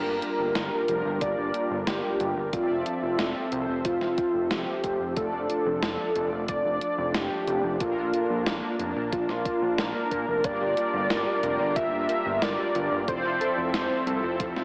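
Carrying an AM-radio sound and a moderate concert-hall reverb, this short, driving, cinematic synthwave cut at 91 BPM moves through Gm7, Fmaj7, Dm/F and Bbmaj7 under an up-front, velvety sawtooth lead carrying the melody with chorus, vibrato and digital delay. Beneath it sit a smooth, warbling analog pad pumping against the sidechain, dark brassy synth stabs and a fat, detuned analog bass, while a gated 80s drum machine's hi-hat and gated-reverb snare arrive at 0.2 seconds and a thumpy electronic kick follows at 1.2 seconds. At 10.4 seconds, a round, tine-like thumb-piano-style pluck slips in with gentle arpeggios soaked in chorus and tape echo.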